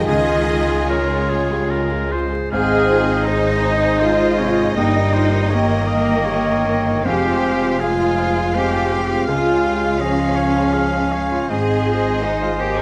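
A smooth, even cello section anchors this moving, sorrowful orchestral film cue, cut from a longer piece and flowing in a rubato 3/4 at around 72-84 BPM. Above it, a rich violin section carries the melody with expressive vibrato and a soft attack, while a second, very quiet violin line sits close beneath. An airy, hollow silver flute, a punchy close-miked oboe and a mellow clarinet weave further second lines, the oboe and clarinet entering at 0.1 s. A clear baby grand piano with short sustain and a focused viola section supply accompaniment, as dark French horns hold sustained chords and a distant double bass section fills out the low end. The harmony moves through Db, Ab, Eb/G and Fmadd9 before returning to Db and Ab, with a new section opening at 2.5 s. Light reverb and a layer of vinyl crackle lend the recording a nostalgic patina.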